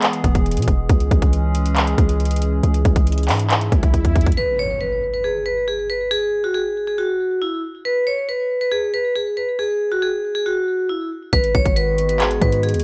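A half-time trap groove at 138 BPM drives this wistful, triumphant hip hop clip, with an up-front electronic kit of hard-clipped kick, metallic hats and handclaps over a deep, boomy 808-style bass, while a hollow, flute-like pad with chorus holds mellow sustained chords on E and C#m. A swell and drum fill lead into an electronic impact at 4.4 seconds, where the drums, bass and pad stop and a bright vibraphone played with hard mallets takes the melody, ringing and metallic with its motor off. The kit, bass and pad return at 11.3 seconds beneath the vibraphone on a G#m7 chord, the whole dry mix coloured by worn, warbling cassette tape pitch drift.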